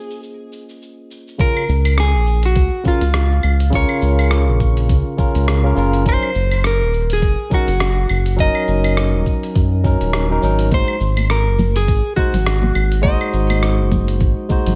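A light reverb gives this smooth, relaxed sunset chillout excerpt a soft, open air, with a swung sixteenth-note feel in four. A bright, barky tine electric piano heard through a combo amp carries the accompaniment with a touch of delay, while a dark, fingered clean electric guitar sings the melody through phaser and delay. A gritty, tape-warm sampler-style soul kit of claves, hi-hat, rim click and shaker, compressed and re-recorded in a large room, sets the groove, joined at 1.4 seconds by a thumpy electronic kick and at 1.7 seconds by a deep, round analog bass that sits up front with a dark, detuned, sustained tone. Close, dry acoustic congas slip in quietly in the background at 10.7 seconds. The harmony drifts from Bbm11 through Db6 and Gb6 to Ab7, keeping the mood easy and unhurried.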